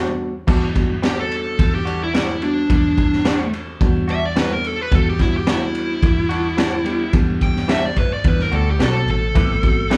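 A band playing together in one room, with light reverb, lays down a brooding, mournful straight-eighth soul blues in E minor at 108 BPM, cut from a longer piece and sitting on Em9 before moving to Am9 at 9.4 seconds. Mellow tine electric piano, twangy, compressed stabs from a clean direct guitar, and a round, foam-muted vintage bass start together. At 0.5 seconds a crunchy breakbeat kit with a high-tuned snare, tight kick and dark, rolled-off cymbals arrives up front. From 1.1 seconds a dark, smooth overdriven lead guitar carries the solo melody, prominent in the mix.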